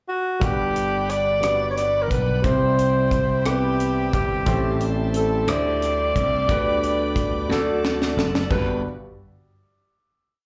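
An alto saxophone, played with light vibrato and a roomy, distant tone yet sitting up front, opens this brief, slow gospel piece at 0.1 seconds with a free-flowing pop-style solo melody in G major, moving at 59 beats per minute in a straight 6/8. A concert grand piano supports it with intimate quarter-note chords, audible action noise, deep bass and long sustain, while a bright tonewheel organ shouts lightly overdriven held chords with grace notes through a fast rotary speaker in the background. A studio string section adds a soft-attack, sul tasto pad with vibrato beneath, and a growly, punchy slap bass carries a gospel line with slides. A tight funk drum kit with dark cymbals, a high-tuned snare and a compact kick lays down the slow six-eight groove, playing a fill at 7.5 seconds before the band settles on a final Gmaj7 chord at 8.5 seconds. The harmony moves through Gmaj7, Cmaj7, Am7 and D9sus4 toward D. 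The sound is that of a live club gig heard through the venue's PA, with club reverb and a dulled top end, giving the reverent, jubilant mood a close, in-the-room feel.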